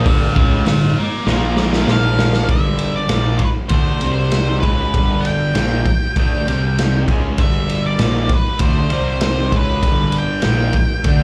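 Garage rock at 98 BPM in a straight 4/4, rowdy and swaggering, heard as a short cut from a live club gig through the venue's PA. A dark, picked octave-fuzz lead guitar opens with a solo over the first 2.5 seconds while the raw drum kit throws in a fill from 1.3 seconds, then settles into hi-hat, ride, punchy kick and a medium-tuned snare with a gritty, saturated, rolled-off sound. Underneath, a bright, double-tracked fuzz guitar plays the riff and an overdriven picked bass adds punch, moving through G5, C5 and G chords.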